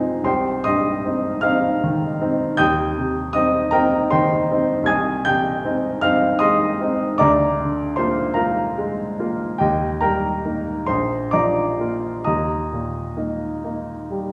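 Heard from further back in a reverberant recital hall, a woody, natural-toned upright piano plays alone in this yearning, mournful romantic nocturne, a short passage cut from a longer piece that sways in a rubato 12/8 at roughly 42-53 dotted-quarter beats per minute, spanning Bb1 to Ab6 and turning from C minor toward Eb major at 4.9 s before settling on a bare Eb close.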